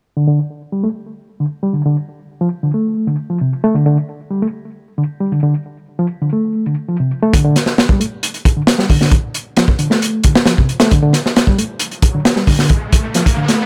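A straight 4/4 breakbeat groove at 134 BPM in D minor sets a funky, gritty mood in this short cut from a longer piece. A reedy, worn electric piano, slightly out of tune and pulsing with fast tremolo through a low-pass filter, delay and a filter sweep, plays a riff up front from the start. A crunchy, saturated breakbeat kit of hi-hat, punchy kick and medium-tuned snare joins at 7.3 seconds with a dark, rolled-off top in a small room, and a soft electronic riser enters at 11.9 seconds.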